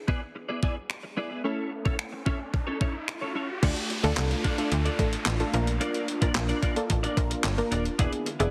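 A punchy, nasal chord stab pumping with sidechain opens this energetic, driving dance-pop excerpt, joined at once by a bright, twangy twelve-string electric guitar riff and a crisp 8-bit drum machine with a thumpy kick, snare, snaps, claps, hi-hat and crash, while an electronic riser and downlifter sweeps in at 1.1 seconds, and at 3.6 seconds a snappy slap-like FM bass with a metallic attack and an airy, breathy pad in the background arrive, all under a heavily compressed radio sound with light digital ambience.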